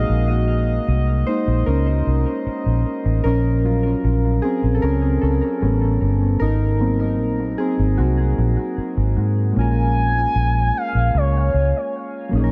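Late-night and longing, this slow contemporary R&B excerpt in Bb minor moves at 76 BPM, with soft, round electric-piano-like synth keys, treated with chorus and tape echo, laying down lush chords over a dark, foam-muted fingered electric bass that sits punchy and up front. At 9.6 seconds the harmony settles onto Bbm7 and a smooth, wave-folded lead enters, gliding with portamento and vibrato until 11.9 seconds. The mix is dry on reverb but heavy with echo, its top end dulled for a hazy vintage feel.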